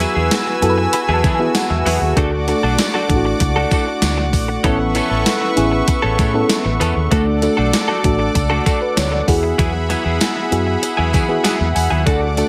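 A steady, straight 4/4 pulse at 97 BPM comes from a gated 80s digital drum machine sitting up front, its thumpy kick and overdriven, gated-reverb snare joined by hi-hat and tambourine, while a separate jingly, band-limited tambourine sits very quietly underneath. This short cut from a longer 1980s-style pop piece feels nostalgic and uplifting, moving through Eadd9, D, Aadd9 and D before returning to Eadd9 at 9.3 seconds. A vintage muted fingered electric bass supplies a dark, round, punchy low end, and a direct-recorded clean electric guitar plays a bright, compressed, picked riff colored by analog chorus and digital delay. A mellow FM electric piano with chorus and phaser provides soft, decaying accompaniment and adds fills from 0.3 to 2.2 seconds and again at 10.8 seconds. Above it all, a brassy analog pad holds bold, airy, detuned sawtooth chords with a filter swell, vibrato and chorus, and the mix is framed by light reverb and digital ambience.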